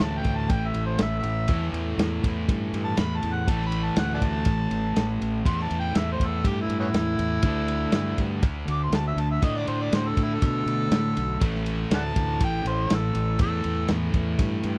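A dry, close 1970s-style studio sound frames this raunchy, gritty blues rock power trio cut with a southern rock lean, moving at 121 BPM in a straight 4/4 over chords of A5, D5 and back to A5 at 11.4 seconds. An amplified, overdriven harmonica takes the solo with light vibrato, tongue slaps and scooped jazz-style notes until 13.9 seconds, riding over a picked, double-tracked overdriven electric guitar riff that sits up front. Underneath, a growly fuzz fingered bass and a muffled, lo-fi vintage kit with a punchy kick, medium-tuned snare, ride cymbal and rolled-off top carry the bottom in this brief segment from a longer piece.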